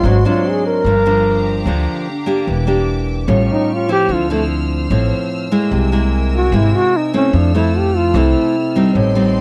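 A warm, scooping trombone with light vibrato carries a sunny, romantic bossa nova melody in F major at 148 BPM, over fingerpicked nylon-string guitar, a woody pizzicato upright bass up front and a distant, earthy bowed string section holding clear chords, moving from Ab7#11 through Dm9 to Fmaj7 in a dry, close 1970s-style studio sound with faint mains hum, the trombone stopping at 9.0 seconds in this short cut from a longer piece.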